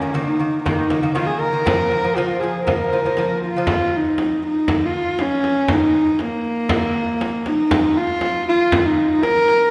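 Mongolian folk in a solemn, vast mood at 119 BPM in Bb yu mode, cut from a longer piece, where a single husky, rich horsehead fiddle carries the bowed melody up front with light vibrato, soft attacks and portamento, a delicate fingerpicked lute with double gut strings plays arpeggios over Eb5 and Bb5 chords until 3.7 s, and a frame drum struck with hard hands adds percussion, all set in the long, wet reverb of a church or concert hall.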